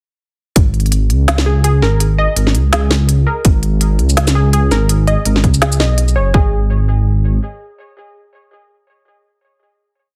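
Half-time drum and bass in G# minor at 166 BPM, heavy and dark, with a swung 16th feel and a heavily compressed, radio-like digital ambience. A deep, rumbling detuned saw bass with tube saturation holds long dark notes from 0.6 seconds, alongside a hard-clipped electronic kick and an overdriven kit of woody snare, crisp hats and shaker in a sparse half-time beat. Above them, a warbly, dusty lo-fi pluck with chorus and tape echo repeats a 16-step arpeggio from 1.5 seconds, and the drop gives way at 6.3 seconds to a final note.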